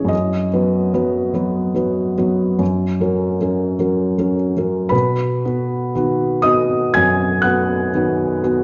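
A felt-muted upright piano opens this nostalgic, dreamy romantic nocturne in B major, a short passage cut from a longer piece that moves in a slow, rubato 4/4 at 48-62 BPM. The solo piano sounds soft, mellow and intimate, sitting up front with its action noise clearly audible as it ranges from F#2 to G#6 over chords moving from B/F# to F# and resolving to B at 4.9 seconds, where a new section begins. A wet recital hall reverb and a dark production surround the instrument in a hazy glow.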